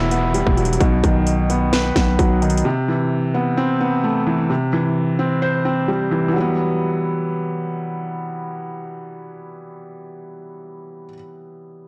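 A brooding, melancholic trap excerpt opens with a soft, felt-muted upright piano, a growling 808-style bass and a faint electronic downlifter sinking in the background, joined almost at once by an overdriven trap kit in a half-time feel. The drums sit up front with a hard-clipped kick, sharp snare and metallic hi-hats, sounding as if re-recorded in a small room, while the buzzy, sine-based bass hits with a fast attack and decays low in the register. Both the drums and the bass stop at 2.6 seconds, and the downlifter fades a moment later at 2.7 seconds. From there, the piano carries on alone until 11.9 seconds, an intimate, mellow presence with thin felt and audible action noise. It moves through minor added-ninth chords toward a major C and then returns to the opening E minor harmony at 6.3 seconds. Light reverb and a digital ambience surround the piece, and the whole recording sounds blown-out and overdriven.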